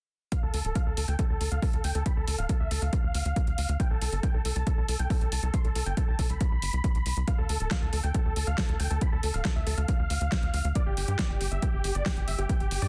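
A huge, detuned supersaw lead carries the melody through this bittersweet, euphoric stretch of uplifting trance, its bright unison sawtooth tone shaped by sidechain pumping, a low-pass filter and digital delay. Beneath it, a punchy, tape-tinged analog kick sits up front beside a tight sequencer bass with a fast-attack filter pluck and its own pumping, while a layered big-room kit adds a massive overdriven snare and metallic hi-hats. The harmony moves from Dm to Am and back to Dm before the chords drop away at 10.8 seconds, and the mix is dry, dense and heavily limited.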